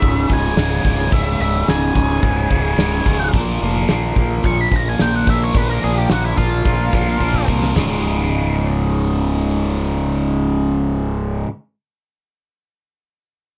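Heard through light reverb, this short slice of a longer classic rock track has a swaggering, driving feel, moving at 108 BPM in a straight 4/4 in Db major. A huge arena drum kit with a pumping room sound, fat snare, punchy kick and bright cymbals drives the groove on hi-hat, kick, snare, splash and toms, closing its run with a fill from 7.2 to 7.8 seconds before dropping out. Underneath, a fuzz-soaked fingered electric bass sits up front, warm, punchy and overdriven. Two picked, overdriven guitars carry the riff, a cranked stack guitar colored by phaser and a second bright electric guitar, both ringing on to 11.5 seconds. Over them, a dark octave-fuzz lead guitar plays a solo through wah, distortion and slapback echo until it stops at 7.5 seconds, as the music moves into a new section at 7.8 seconds.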